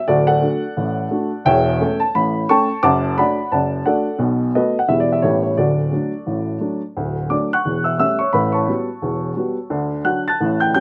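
A dry, open-air recording puts a dark, woody upright piano up front for a playful, swinging stride-jazz solo in D major at 174 BPM, ranging from D1 to A6 over changes such as D, A7/E, D/F#, Em and A13, in a brief cut from a longer piece.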